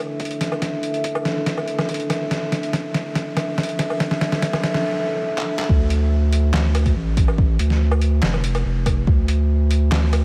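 Dark and cavernous, this deep dubstep clip in half-time opens with a nasal, detuned analog pad holding a suspended chord under chorus while an overdriven kick and a gritty, pitched-down sampler-style kit of handclaps, hi-hat, snare and woodblock build through drum fills, until the drop at 5.7 seconds brings a thick, saturated sub bass up front on a minor chord, all soaked in a dreamy haze of huge ambient reverb and vinyl crackle.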